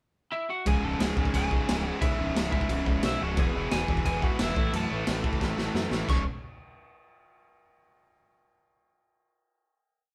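Angry and raw, this short punk rock piece tears along at 177 BPM in 4/4 with a straight feel, set in C# minor. A twangy, slightly broken-up lead guitar opens alone at 0.3 seconds with a compressed, motif-based melody in period phrases, partly doubled in octaves, before the full band crashes into the chorus at 0.7 seconds. Two bright electric guitars, one distorted and one overdriven, sit in the background driving eighth-note power chords, while a growling picked bass with a round, punchy, overdriven tone pushes eighth notes underneath. Up front, a raw garage drum kit pounds out a fast punk groove with a boomy kick, medium-tuned snare and dark cymbals, its saturated, gritty sound and rolled-off top pumping in a small room. The harmony moves from C#m through E and A5, a drum fill lands at 5.4 seconds, and the piece closes on a final C#5 chord, all captured with light reverb like a band playing live in one room.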